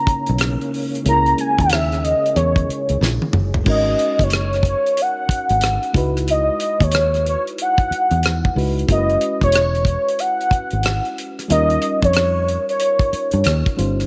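Soulful and sultry, this neo-soul R&B excerpt at 92 BPM swings a velvety, detuned synth lead with vibrato over mellow, round FM electric piano, a briefly heard overdriven tonewheel organ with key click and slow rotary speaker that drops out at 3.6 seconds, punchy foam-muted fingered bass and a damped 70s kit with a fat snare, moving from a drum fill into lush extended chords like C#m11 and F#9sus4 in light studio reverb.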